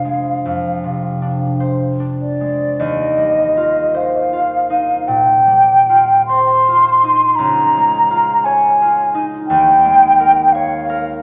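A hollow, pure-toned concert flute sings the melody up front from the very first moment, its soft attack and gentle vibrato floating over a concert harp that accompanies with ringing, fingerpicked tones far below. This hazy, mysterious impressionist duo moves in a slow, rubato 4/4 at around 48-58 BPM, drifting through Fm6, Eb69, Db69 and Eb9sus4 harmonies, with a new passage opening at 2.8 seconds. A wet recital hall reverb surrounds the pair in this short excerpt from a longer piece, and the flute sits well above the softer, warm harp.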